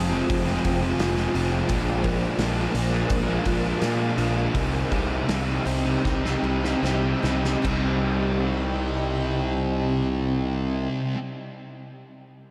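In a straight 4/4 feel that slows between 1.7 and 7.6 seconds, this brooding, dreamy shoegaze and dream pop excerpt sets an up-front, dark overdriven semi-hollow guitar riff with reverse reverb and a growly, bright fuzz bass against a background fuzz guitar riff thickened by lush chorus, a very quiet, shimmering twelve-string acoustic arpeggio, a blurred, evolving granular cloud pad holding sustained chords, and a loose indie drum kit with dark cymbals and a punchy kick that plays a fill from 6.0 seconds before stopping at 7.8 seconds, all soaked in a huge ambient reverb as the chords move from Fmadd9 through Bb5 to Cm.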